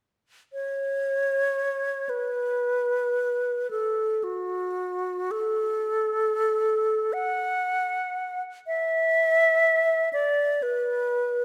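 A lonely, meditative classical fragment for unaccompanied alto flute, cut from a longer piece, drifts in a rubato 6/8 at roughly 31-42 BPM in F# minor, tuned to A4 = 436 Hz. The solo alto flute plays alone from 0.5 to 11.4 seconds, ranging from F#4 to F#5 with an airy, bright tone, vibrato, tongued notes and lifted highs. It sits up front in a wet scoring-stage reverb with a 2.1-second tail.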